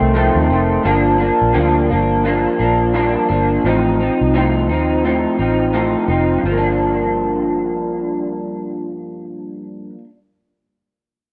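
Lonely and hazy, this short bedroom-pop fragment, cut from a longer piece, pairs an up-front, slightly broken-up electric guitar with analog chorus and vibrato, played through a small old amp over Gm7 and F7 chords, against a dark, round, foam-muted fingered bass, all in a lightly swung feel, moderate studio ambience and a rough home-demo mix.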